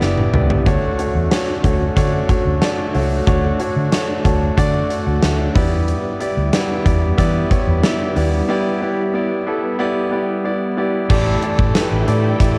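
1980s-style pop with a glossy, uplifting mood, this short cut from a longer piece opens on a drum fill from a huge arena kit with a fat snare, punchy kick and bright cymbals, while a clear concert grand piano with audible action noise and long sustain sits up front beside a dark, round, foam-muted fingered electric bass. A warbling string machine playing violas holds mellow sawtooth chords in the background through ensemble chorus, and the whole home cassette recording carries a light small-room reverb, with a break at 8.5 seconds. At 11.1 seconds the harmony moves to an A7sus4 chord as a very quiet, crunchy overdriven guitar enters with bright picked notes.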